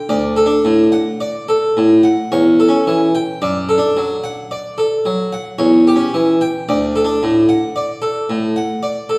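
A plucked, full-bodied Flemish-style harpsichord with two sets of strings sits up front in this serene, flowing baroque-style suite movement in D major, unfolding at a rubato 55 BPM in 3/4 through the chords D, A7/E, D/F#, C#dim/E and back to D, its mid-forward tone carried by the generous reverb of a church or concert hall in this brief passage cut from a longer piece.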